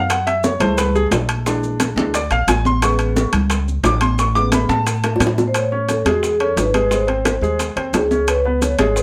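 Afro-Cuban jazz, sophisticated and danceable, cut from a longer piece, opens on a woody, present upright piano playing solo for its first 5.5 seconds over a thumpy pizzicato upright bass and a percussion bed of tight, high-tuned bongos, bright thin-skinned congas, ringing metal-shelled timbales and grainy maracas. A drum fill leads into the second section at 5.5 seconds, where a dark, smooth vibraphone played with soft mallets takes the melody. The chords move from F#m9 through Bb7#11 and Amaj7 before settling on G# and G#madd11, all in a moderate small-room ambience.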